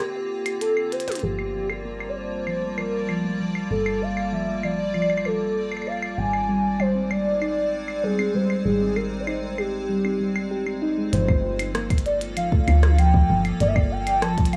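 An eerie, glitchy IDM excerpt opens with a warbling, nostalgic lead carrying the melody up front over an icy, crystalline glass pad, and a clicky drum kit of low-pass filtered claves, hi-hat, rim clicks and toms joins at 0.5 seconds. At 1.2 seconds a woody, round FM bass with tube saturation arrives alongside a harp-like synth pluck playing ringing arpeggios under a filter sweep, while a bubbling, resonant texture of random filter steps sits in the background. A soft electronic kick enters at 11.3 seconds, and the recording has a dry, gritty hardware character with light digital ambience.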